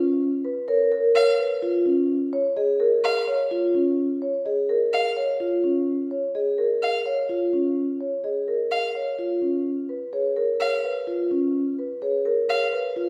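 A soft-malleted vibraphone opens this propulsive, hypnotic minimalist classical excerpt at 127 BPM, its mellow, dark ringing arpeggios joined by a woody marimba melody on rosewood bars with a vintage, band-limited tone and, from 1.2 seconds, a single rich violin bowing arpeggios with vibrato, all three up front in a wet recital hall reverb as the harmony moves from C#7 to C#add9.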